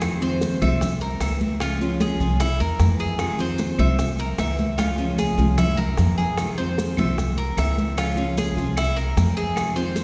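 Nostalgic and danceable, this Cuban son and guajira excerpt puts a dark, thumpy pizzicato upright bass up front beneath a full-bodied picked steel-string acoustic guitar and a bright, metallic Cuban tres whose double-strung arpeggios enter at 0.2 seconds, with grainy maracas alongside and tight, high-tuned bongos, thin-skinned congas and woody, distant claves in the background, a drum fill from 4.8 to 6.4 seconds over a cycling Fm7, C7, Db, C7 progression, and a wet concert hall reverb.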